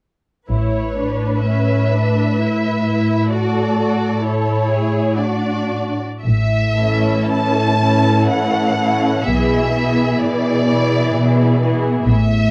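A gently reverberant, darkly mellow recording opens this brief slice of a slow, romantic movement for string orchestra, its serene, tender mood unfolding in triple metre with a flexible, rubato feel. The first violins carry the melody high and soft-edged, their vibrato expressive and their top smooth, while a second violin section sits further back with a shadowy, distant tone on the inner line. Violas fill the middle with a rich, focused accompaniment, and the cellos, placed up front, anchor the bass with an even, lush sound. Chamber-sized double basses add a dusky, sliding depth, sounding briefly at the start and then returning from 6.2 seconds as the music moves into its second section. The harmony settles gently between tonic and subdominant colours before turning toward a dominant seventh near 9.3 seconds, leaving the phrase suspended as the clip ends at 12.5 seconds.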